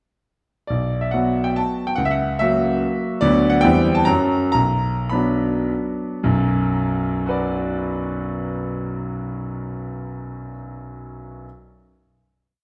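A bright, brilliant grand piano, up front with long sustain and a vintage sheen, plays a nostalgic, capricious romantic dance in 3/4 and B minor at 100-159 BPM, its single-line melody over bass and chords stressed on the second or third beat, with dotted rhythms and rubato, slowing from 2.6 to 6.2 seconds before a final chord rings into a wet recital hall with a dark production across this whole piece.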